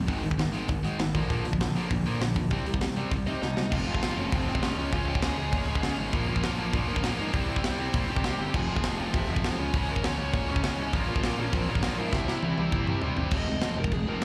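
Punk rock at an angry, urgent 200 BPM, heard live through a club PA with light reverb, where two picked electric guitars, one overdriven and set back in the mix and one tight and distorted, hammer out slapback-echoed riffs over a growly fuzz bass and an up-front acoustic drum kit with a tight kick and a rolled-off top, whose fills at 3.4 and 12.1 seconds drive the chords from Ab, Bb and Cm into an F harmonic minor cycle of Fm, Db, Bbm and C, while a dark, smooth overdriven lead guitar with slapback echo slips in from 3.3 seconds in the background.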